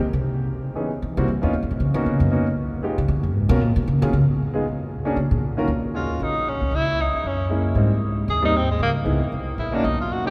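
A brisk swung 4/4 drives this cool, moody fragment of small-group jazz, opening on a woody pizzicato upright bass that carries a featured solo until 5.7 s, while a smooth concert grand piano with a deep bass register joins as accompaniment at 0.8 s. At 6.0 s a vintage-toned tenor saxophone with light vibrato takes the melody, up front beside the bass and piano, over chords such as Ebm11, Gb9 and Abmaj9. The players sit in a church or concert hall whose long, wet cathedral reverb gives the recording a vast, echoing sound.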